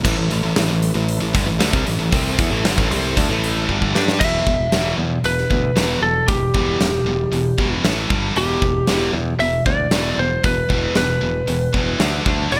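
A driving, straight 4/4 hard rock pulse at 116 BPM in E minor powers this aggressive excerpt, where a punchy, up-front drum kit in a bright stone room, a growly picked bass and two distorted guitar riffs (one scooped and high-gain, the other compressed in the background) open over a very quiet, shouting tonewheel organ with slow rotary chorus vibrato that stops at 4.2 s after a drum fill, when a twangy, slightly broken-up lead guitar takes the up-front melody over chords moving from Em through A5 and G5 to D5 under light reverb.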